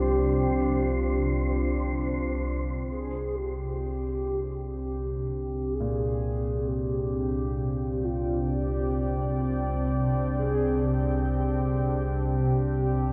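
An ominous, rumbling drone sits up front in this unsettling dark ambient piece at 64 BPM, joined by a moody, warbling detuned pad, a round horn-like synth lead with vibrato, chorus, phaser and delay, a mellow baby grand piano playing arpeggios in the background that fades out from 2.9 seconds, and an airy, wind-like noise texture that stops at 2.9 seconds, the whole mix steeped in a vast, echoing cathedral reverb and opening on a Csus2 chord.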